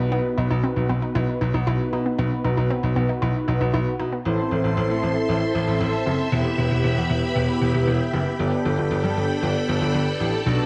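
An echo-drenched room with a moderate chamber reverb surrounds this cool, nocturnal synth-pop excerpt, where a clear, up-front grand piano carries the bass with short-sustained notes while mellow, detuned synth brass with chorus and tape echo fills in the accompaniment. A punchy unison pluck plays arpeggios through the opening until 4.2 seconds, and at 4.3 seconds a swirling, phased string machine enters with bright sustained chords as the harmony moves from B through Am and Em to Gadd9.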